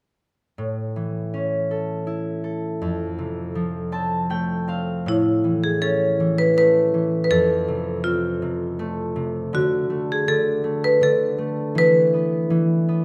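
A fingerpicked concert harp opens this gentle, sleepy lullaby at 0.6 s, its ringing chords moving from A to F in a straight 3/4 at 81 BPM, tuned slightly sharp to A4 = 441 Hz, and adding a fill from 3.6 s. At 5.1 s a bright, percussive marimba played with hard mallets takes the melody up front in a narrow middle range, while the harp, also up front, carries on alongside it through Aadd9, F, D5 and E5. A moderate recital hall reverb gives the children's piece a soft, roomy glow, and the recording is cut from a longer piece.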